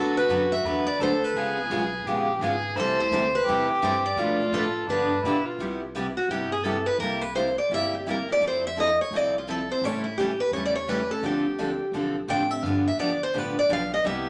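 A wet studio reverb surrounds this lively, swinging acoustic string swing excerpt in jazz manouche style at 170 BPM, where an up-front, boxy parlour guitar carries the melody with audible finger squeak while a reedy, gut-string violin with light vibrato adds a second line until 5.6 s. Two picked accompaniment guitars, one full-bodied jumbo and one bright auditorium model with fresh strings, fill out the harmony over a dark, woody pizzicato upright bass. From 5.6 s the piece settles into C major and the lead guitar takes a solo through to the cut at 14.3 s.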